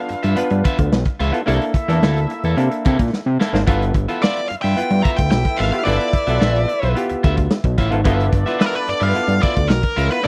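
Gritty and funky, this 109 BPM funk cut in G mixolydian rides a crunchy, saturated breakbeat kit with a punchy kick and a fat, detuned analog bass up front, both sitting in a dry, close 1970s-style small room while chords move between G13 and C13. Overdriven clav stabs, a twangy electric guitar at the edge of break-up with spring reverb, and a distant, tight horn section with octave doubling fill in behind. A drum fill at 3.1 seconds precedes the entry of a nasal, overdriven lead guitar with a parked wah at 4.2 seconds, which carries the melody up front.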